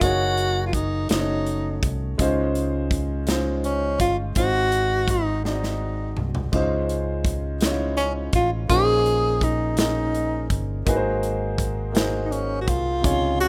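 Slow gospel in 6/8 at 55 BPM in Db major, jubilant and soulful, where a clear, close-miked tenor saxophone sings the melody with vibrato and scooped notes over an intimate grand piano with audible action noise, a round, dark fingered electric bass and a tight acoustic drum kit with dark cymbals that plays a fill at 5.4 seconds, all in a rough home demo mix with light small-room reverb, moving through chords like Gb69, Dbmaj9 and Bbm11.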